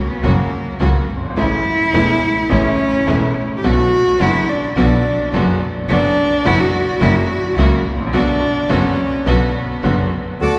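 Nostalgic and elegant, this rubato tango in B minor moves at 106 BPM in 4/4, tuned to A4 = 436 Hz, and is cut from a longer piece. A dark, bowed cello carries the second line as a solo from 0.0 to 10.4 seconds, played sul tasto with vibrato, a soft attack and a smooth top, sitting close and up front. Beneath it, an upright piano adds woody, intimate accompaniment with audible action noise and a short sustain, while a bowed double bass holds the low end with a focused, clear tone. A lush studio string section supplies bowed stabs in the background, and the harmony passes through F#, A, Bm/F#, F#7 and back to Bm. A reedy bandoneon with a boxy, up-front sound takes the melody at 10.4 seconds, and a long cathedral reverb gives the whole piece the space of a church or concert hall.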